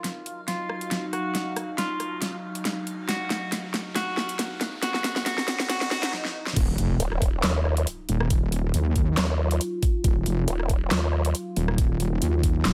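This excerpt opens on a bright, twangy clean electric guitar melody filtered through tape echo, over a morphing wavetable pad with phaser and sidechain pumping, as a build-up of overdriven big-room drums with a huge snare and metallic hats leads through a brief stop at 6.1 seconds. At 6.6 seconds the aggressive, heavy wobble dubstep drop hits in Eb minor at 138 BPM with a half-time, swung feel: a saturated, detuned sawtooth wobble bass and a knocking electronic kick push up front, with a very quiet riser, swell and impact underneath. A nasal, resonant vowel-sweep wobble bass joins from 7.0 seconds, all held in light digital ambience.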